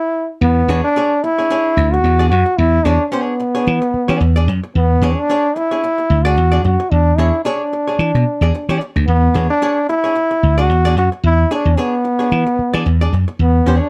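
Funk with an energetic, strutting swing, this short cut opens on a stop where a forceful trombone with vibrato begins alone before a growly slap bass and a dark, clean, picked hollow-body electric guitar join by 0.7 seconds, the trombone and bass punchy and up front under light reverb in a dark, warm production.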